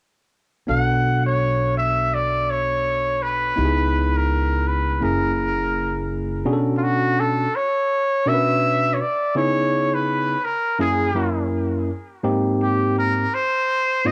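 This hip hop excerpt has a nocturnal, cool mood and a swung sixteenth-note feel, taken from a longer piece and captured as a home recording on cassette with a moderate studio reverb. A trumpet with a straight mute carries the melody in a jazz-style solo, its nasal, breathy tone shaded by light vibrato and scooped notes, sounding distant and roomy yet up front, with cassette tape coloring and an analog delay. Beneath it, a tine electric piano plays clean accompaniment through its built-in speakers, also run through cassette tape. A pizzicato upright bass with steel strings gives a woody, thumpy foundation until it drops out at 6.4 seconds, leaving the trumpet and piano to finish the second section alone through 14.1 seconds. The harmony cycles through Bm9, C#m7 and F#9, then closes on G#maj7 at 12.2 seconds.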